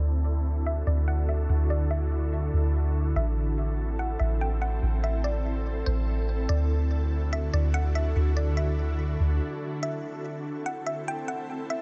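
Lightly reverberant and hazy, this melancholic hip hop excerpt moves at 144 BPM with a half-time feel in A dorian, built on Dadd9 and Am chords. A woody, warbling FM synth pluck carries the melody through chorus, phaser and tape echo over an ethereal, detuned pad that holds airy sustained chords, while a soft, round 808-style bass sits deep and up front. A filter sweep runs until 9.8 seconds, and the bass drops out at 9.4 seconds for a brief break before a short closing section returns to Am.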